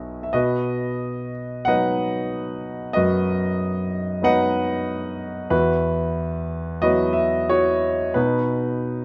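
A concert grand piano opens the recording alone, playing a lyrical classical passage with a sunny, hopeful mood. The instrument sounds warm and natural, placed up front, with a deep bass that reaches down to the low register while the range extends as high as F#5. The playing moves in a flexible rubato over a 4/4 metre, with the harmony shifting from B to Esus2 and settling back on B. A short piano fill arrives at 8.8 seconds, just before this brief passage, cut from a longer piece, ends at 9.0 seconds. Light reverb gives the piano a gentle sense of space.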